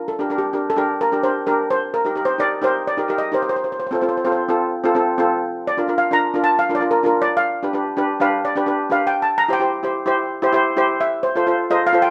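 Calypso at 129 BPM with a festive, sunny mood, this short excerpt features two metallic, shimmering steel pans struck with medium rubber sticks and placed up front in a wet studio reverb: a dark, smooth lead pan carries the melody from the opening moment, while mid-forward cello pans supply accompaniment from 0.2 seconds over chords moving from Gm through Eb, F, Bb, G7 and C to F.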